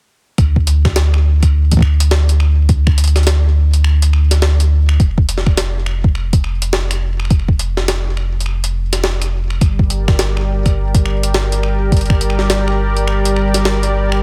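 Eerie and intricate, this IDM excerpt moves at 104 BPM in G minor with a 62% swing on the sixteenths, as a soft, tape-warm electronic kick and a deep, round sine sub bass sit up front. A gritty, pitched-up jungle sampler-style kit adds finger snaps, hi-hat and a high-tuned snare with a compressed, large-room character, all in a dry mix. At 9.6 seconds a smooth, detuned sawtooth pad enters on a G minor chord with chorus and a soft attack, and the kick drops out at 12.2 seconds while bass, kit and pad continue.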